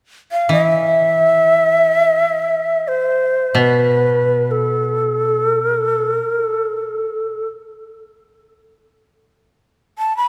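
Calm and austere, this short passage of Japanese traditional music moves in free time, in E miyako bushi with the tuning set to A4 = 438 Hz. A breathy bamboo shakuhachi carries the melody from 0.3 seconds to the close, ranging from A4 up to B5 and placed up front with a crisp, chiffy attack and vibrato. Beneath it, a koto played with fingerpicks supplies accompaniment in a low register from B2 to E3, sitting quieter in the mix and falling away at 6.2 seconds. The koto's bright, woody tone is dry, while the shakuhachi's end-blown, warm voice stands out against it. The whole recording sits in a reverberant church-like space with a long 2.9-second decay, and the passage is cut from a longer piece.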